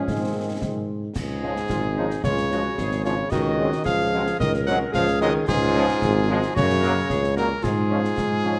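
A warm cornet with vibrato and a soft attack carries the melody up front in this rousing, festive military-style wind band march at 111 BPM in Db major, joined by an equally forward mellow tuba bass, a close-miked euphonium and a smooth-topped woodwind section on second lines in the background, a very quiet, distant French horn section adding accompaniment, a roomy trombone section holding sustained chords, and a dry concert snare drum, concert bass drum and dark-toned clash cymbals, all set in a moderate stage reverb.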